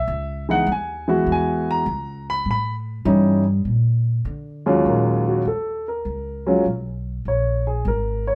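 Jazz piano trio excerpt with a smoky, swinging mood at 100 BPM in 4/4 with a swung eighth-note feel, where a warm, up-front grand piano carries the melody and takes a solo over the first 4.8 seconds before settling into E-flat minor, while a woody, dark, growly pizzicato upright bass sits up front beneath it throughout, all heard as a band playing live in one room with moderate studio reverb.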